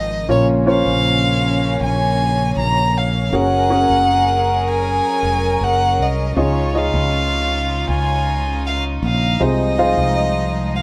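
A solo violin carries the melody up front, intimate and close, its airy bowing shaped by a soft attack, vibrato and the hushed tone of sul tasto playing. This hopeful, emotional pop ballad moves in a straight 4/4 and is cut from a longer piece, with the four parts playing together through the full 10.8 seconds. A grand piano with short sustain supplies the accompaniment, while a studio string section holds sustained chords behind it, pure and floating from a distance. Underneath, a fretless electric bass sounds dark, round and direct, sitting forward in the mix. The chords move from Bbmadd9 through Gbadd9 and Dbadd9 to Fm7/C, and a moderate studio reverb gives the feel of a band playing live in one room.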